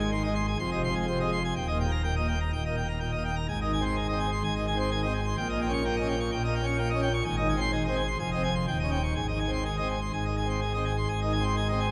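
A solo pipe organ on full plenum, its mixtures giving a brilliant, baroque-voiced sound that sits up front, carries this majestic classical toccata in Ab major. The music moves at 126 BPM in a straight 4/4, and the organ spans a broad range from the deep bass at Eb1 up to Db6. The harmony circles through Ab, Fm7 and Eb before returning home, then passes through Eb7/Bb back to Ab, and moves through Fm7 and Eb7 to resolve on Ab at 9.1 seconds. A wet cathedral reverb with a long 4.0-second decay surrounds the instrument, giving it a vast, resonant space. This short passage, cut from a longer piece, runs just under 12 seconds.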